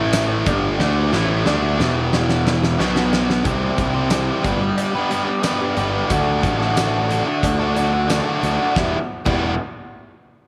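A straight 4/4 pulse at 90 BPM drives this gritty, brooding classic rock passage in E minor, where a biting overdriven guitar and a raw, lo-fi garage guitar push up-front riffs over fuzz-soaked picked bass and a huge arena drum kit with a fat snare and punchy kick that rolls through a fill from 0.8 to 3.5 seconds, while a very quiet metallic cowbell rings alongside, a barely audible vintage string-machine cello pad hums sawtooth chords until 3.5 seconds, and a woody, jumbo steel-string acoustic guitar slips in softly at 3.4 seconds as the chords move through C, G and D before landing back on Em, all in a light small-room reverb.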